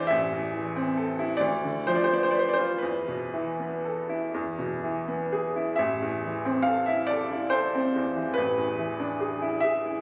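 Mournful and melancholic, this brief excerpt from a longer romantic nocturne in a slow, rubato 12/8 features a solo baby grand piano, bright, brilliant, open and up front, ranging from A1 to F5 through chords moving from Am to Bdim/D, Esus4 and E before returning to Am and closing on E7/A, all set in a moderate scoring stage reverb and captured on a phone in the room.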